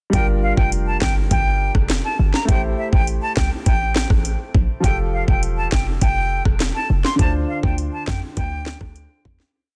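A breathy, bright concert flute carries a syncopated hook in straight tone, its tongued notes a little unsteady and trailed by a digital delay. Underneath sits a hypnotic, bouncy dancehall groove at 102 BPM in 4/4. The electronic drum kit, re-recorded in a large room and placed up front, pairs a knocking kick with a sharp snare in a syncopated dancehall beat where the snare answers the kick, while metallic hats and a rim click ride on top, all roughened with vintage 12-bit sampler grit. A punchy, tight 808-style bass with a sine body, a noise layer, a fast attack and a decaying tail adds syncopated low notes. An intimate grand piano holds polished chords in a spread voicing through Gm7, Am7, Fadd9 and Dm7, its action noise audible. The mix is dry, dense and heavily limited, and the whole piece is a single chorus that fades out from 7.2 seconds to 9.5 seconds.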